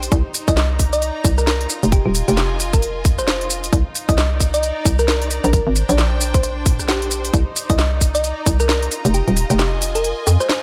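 A moody, skippy UK garage excerpt in a two-step groove at 133 BPM, swung on the sixteenths, sits in C minor and moves through Cm9, Fm7 and Bb69 chords. A round, tine-like synth pluck resembling a thumb piano carries the melody between G4 and Eb5, its gentle, dark tone colored with chorus, phaser and delay. Underneath, a hollow, bouncy FM bass knocks out punchy, fast-attack, decaying notes up front, while a garage kit adds crisp hats, rim clicks, shaker and a cracking snare with a tape-tinged, large-room character. A tight, layered electronic kick drives the beat from 0.1 seconds until it drops out at 9.1 seconds, leaving the final stretch to the other parts. Softly in the background, a rich, smooth studio string section with light vibrato pumps against the sidechain, all set in a digital ambience.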